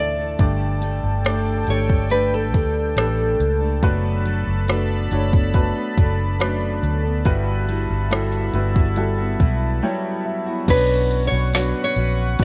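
A small room surrounds this melancholic, longing pop ballad excerpt, moving at a slow 70 BPM in a straight 4/4. A nylon-string guitar carries the fingerpicked classical melody at the start and returns at 10.7 seconds. Beneath it, a baby grand piano plays an intimate accompaniment with its action noise audible, while a fingerpicked steel-string dreadnought adds arpeggios in the background. A bright, evolving sawtooth pad with a soft attack, long release and chorus holds sustained chords, and a dark, round, foam-muted vintage electric bass sits up front. The electronic R&B kit enters at 0.4 seconds, pairing a soft kick and woody snare with crisp hats, rim clicks and crash cymbal. A jingly tambourine flickers in the background near 11.5 seconds, as the harmony moves from Gsus2 through Bm7/F# and Emadd9/G to Bmadd9, with a piano fill and short break leading into the closing passage.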